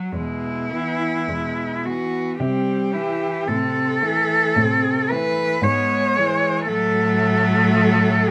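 Serene and lyrical, this classical fragment for four bowed cellos in a rubato 3/4 has a focused, distant melody cello singing high above an expressive, up-front second line with soft attacks and portamento, while intense, smooth-topped accompaniment and bass cellos carry harmonies that drift from E through C and A minor, all with vibrato and set in a moderate studio reverb.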